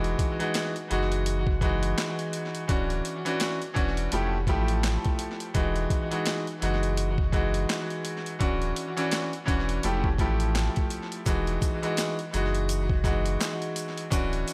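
Boom-bap hip-hop with a confident, nostalgic mood and a swung sixteenth-note feel, cut from a longer piece. A bright, woody upright piano sits up front with audible action noise, long sustain, cassette-tape color and tape echo, cycling through Emaj9, Dmaj9 and Fmaj9 over a round, mellow sine sub bass, while a gritty, pitched-down sampler-style kit brings a thumpy kick, high-tuned snare, hi-hat and handclaps, all treated with tape echo. A very quiet, grainy tube shaker enters at 11.3 seconds, and the whole echo-heavy mix carries light reverb and studio ambience.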